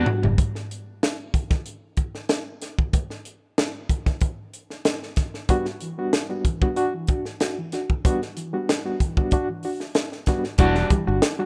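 A rough home-demo mix with light studio reverb carries this funky, hypnotic funk excerpt at 94 BPM in E minor, sitting on an Em9 chord, where a crisp fusion kit in a small, pumping room keeps the groove going up front with a high-tuned snare and punchy kick after a short opening fill. A barky, reedy electric piano, lightly overdriven with fast tremolo, touches in briefly at the start and then plays bright stabs from 5.5 seconds. A round fingered bass, a twangy picked guitar at the edge of break-up, and a dark fingered guitar riff with spring reverb in the background sound briefly at the start and return together at 10.6 seconds.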